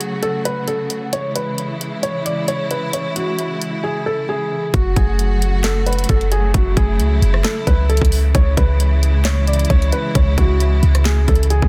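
The drums set a half-time trap groove at 133 BPM in 4/4, with a hard-clipped kick, sharp snare, bright hi-hats, handclaps and rim clicks sitting up front in a small-room sound. This melancholic, dark hip hop passage in F# minor, cut from a longer piece, opens with a felt-muted upright piano carrying the melody, its soft, intimate tone touched by digital delay and audible action noise. Beneath it, a clear symphonic string section holds lush, bowed chords with vibrato, moving between F#m and C#m. At 4.7 seconds a clean 808-style bass enters, deep and boomy with a fast attack and a decaying sine tone that sits prominently in the mix. The sound is dry and close, with a dense, heavily limited modern master.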